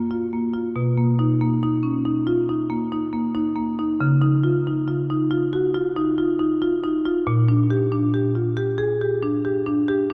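In a rubato 5/4 around 92 BPM, this hypnotic, reflective fragment of a contemporary classical piece for solo marimba has medium hard mallets drawing woody, smooth tones from rosewood bars between Gb2 and Ab4, placed up front yet bathed in a long, wet cathedral reverb and a dark, warm production as the harmony drifts from Gbmaj7 through Bmaj7 and Dbadd9 to Bb6.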